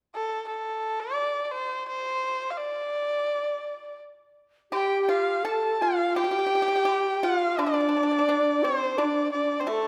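Set in a moderate stage reverb, this wistful, graceful Chinese chamber piece in D yu mode drifts at a rubato 85 BPM as a rich, nasal erhu sings the melody up front with light vibrato and portamento, joined at 4.7 seconds by a breathy, mellow bamboo xiao on a second line, a bright, dry pipa played with fingerpicks, and a woodblock sitting in the background.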